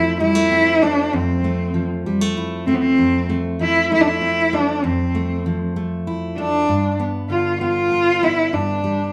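Pastoral and peaceful, this short excerpt from a longer acoustic folk piece moves at an unhurried 65 beats per minute in a straight 6/8. A bowed cello, played by a single musician, carries the melody between B3 and F4 with expressive vibrato and gliding portamento, its tone warm yet somewhat distant even though it sits up front. Beneath it, a fingerpicked steel-string dreadnought guitar supplies a full-bodied accompaniment spanning F2 to E4, with the occasional finger squeak audible on its strings. Both instruments play throughout the 9.1 seconds, with the harmony resting on Fmaj7 before shifting to G7 at 6.7 seconds. A generous large-studio reverb surrounds the pair, lending the intimate duo an airy sense of space.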